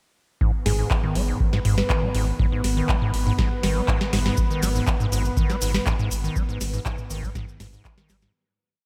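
A deep four-on-the-floor kick and a booming analog drum machine with crisp snare, claps and metallic hats drive this raw, hypnotic acid house piece, where a squelchy, resonant square-wave acid line with accents and slides loops against the bar over a round, off-beat sub bass and a smooth, warbling detuned pad that pumps beneath them, while a gentle keys-like lead adds short background phrases until 2.1 seconds, grainy hand-played cabasa sixteenths join at 4.4 seconds, and the track fades out from 5.7 seconds.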